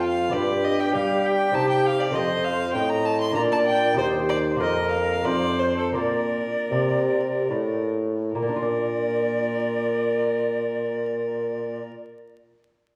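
Heard from further back in a reverberant recital hall, with a faint vinyl crackle, this radiant, serene baroque-style sonata movement in triple time is cut from a longer piece. A gut-strung violin carries the reedy, lightly vibrato melody up front, while an airy silver flute with lifted highs and a soft attack sings the expressive second line, and a dark, smooth-topped bassoon holds the bass close to the listener. A mellow, fingerpicked lute with doubled gut strings adds delicate accompaniment, and the music slows between 3.1 and 8.3 seconds before the second section begins.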